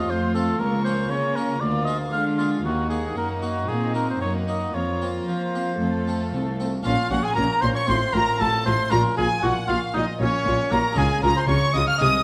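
A stormy, driving baroque-style concerto movement in Bb minor at 116 BPM opens at once with the violin, viola and cello sections, harpsichord and solo oboe. The close-miked oboe sits up front with a warm, lightly vibrato classical tone, carrying the melody alongside a focused, bowed chamber violin section. A darker, woody violin section adds a second line, while a lush symphonic viola section with a smooth top fills in the accompaniment in the background. The harpsichord brings a brilliant, plucked French-style sparkle with octave strings, and an even, rich cello section anchors the bass. At 6.8 seconds a distant, soft-attack double bass section joins the low end as the harmony settles on Bb minor, before the passage breaks off at 12.2 seconds. A wet recital-hall reverb and vinyl crackle give the whole a vintage, roomy sheen.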